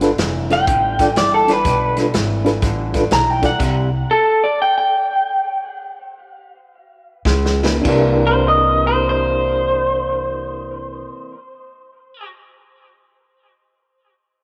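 A studio recording with light reverb captures a rollicking, laid-back electric blues shuffle in C mixolydian, swung in 4/4 at 98-123 BPM and cut from a longer piece. Up front, a compressed, slightly broken-up lead guitar through a small old amp carries the melody with spring reverb from 0.5 seconds onward. Beneath it sit a second picked, lo-fi guitar riff, a reedy electric piano with fast tremolo, woody pizzicato upright bass and a vintage drum kit with dark cymbals and a punchy kick; the tempo slows as these parts stop at 3.6 seconds, leaving the lead guitar alone until a drum fill at 7.3 seconds brings the band back for the second section.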